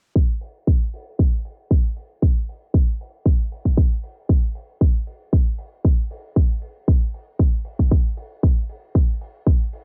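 A punchy, layered electronic kick drum sits up front from 0.2 seconds, joined at 0.4 seconds by a dry acoustic hi-hat with a light swing in this sleek, groovy nu-disco excerpt, where a filter sweep runs throughout a close, cassette-dulled home recording.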